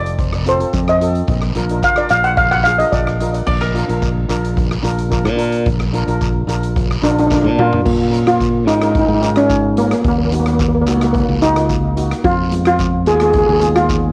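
A shimmering steel pan opens this brooding, cool calypso fragment, its up-front melody carrying tape echo over a mellow, dark second pan, a bright, growly fingered electric bass, a boomy street-band drum kit and a raspy guiro. At 3.5 seconds a dry, woody koto played with fingerpicks adds a brief second line through plate reverb. The airy lead pan returns at 7.0 seconds, just ahead of a drum fill at 7.3 seconds, after which the harmony shifts from F and Bb to Bbm, Ebm and Fdim, all captured as a lightly reverberant home cassette recording.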